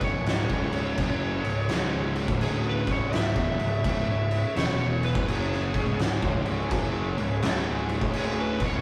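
An oversized, low-tuned acoustic drum kit sits up front in this hypnotic, brooding stoner and doom metal passage, with a punchy kick, fat snare and dark cymbals set in a bright stone room under gritty saturation, all swinging on the eighths over a single minor chord. A distorted, fuzzed-out lead guitar carries a solo melody throughout, while two thick guitars pick a low riff, one very quiet and the other dark in the background, joined by a bright, overdriven electric bass. Behind them an evolving, detuned analog drone holds sustained chords with chorus and a slow attack, all captured as a rough rehearsal-room recording with light reverb in this cut from a longer piece.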